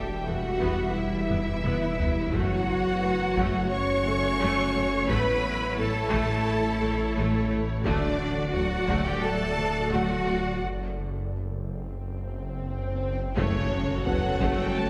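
A vast, relentless hybrid orchestral and electronic film cue opens with lush, vibrato-rich violin, viola and cello sections over a menacing detuned saw bass, an ethereal, very quiet pad and warm French horn chords, with a bowed double bass section and a dry, heavy-stick taiko ensemble soon joining in the background. A soft, felt-muted upright piano adds a mellow, intimate texture with audible action noise from 3.0 seconds, while the harmony drops out for a break where an electronic swell rises into an impact at 13.4 seconds, joined by a brief, very quiet tuba. The whole ensemble sits back in a wet scoring-stage reverb, as though heard from further back in the room.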